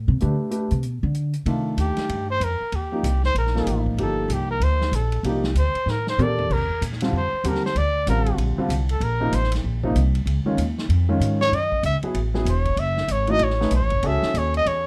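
A vibrato-laden, up-front trumpet carries the solo line from 1.8 seconds in this spiritual, hypnotic modal jazz excerpt, after a woody, thumpy pizzicato upright bass opens with a brief solo. A baby grand piano with audible action noise comps intimately beneath, while a distant, roomy big-band drum kit swings along with its punchy kick, adding a brief fill at 5.9 seconds. The harmony moves to a new tonal center at 11.5 seconds, and the dark, warm production is lightly touched with reverb.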